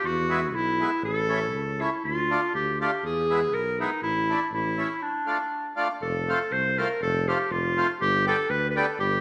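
A lilting 2/4 with swung eighths and a loose, rubato give carries this festive, jolly alpine dance-band passage, cut from a longer piece. A bright, roomy clarinet sits up front with the classical-style melody, a mellow tuba with light vibrato holds down the bass, and a reedy, airy accordion fills in the accompaniment from 0.3 s. A break at 5.0 s gives way to a new section at 6.0 s, all set in a moderate scoring-stage reverb.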